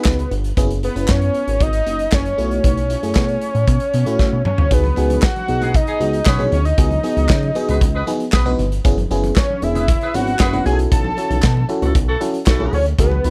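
A straight 4/4 groove at 116 BPM drives this slick, funky early-eighties boogie funk cut in C# minor, where a punchy, up-front studio drum kit with handclaps and a fill at 4.2 seconds supports a dark, glossy chorused synth bass, a glassy, bell-like FM electric piano with chorus and phaser, and a fat, nasal analog lead carrying the melody, while bright, damped congas join in the background at 4.7 seconds and a mellow, distant horn section adds a second line from 5.6 seconds over sus4 ninth chords in a dry, close sound.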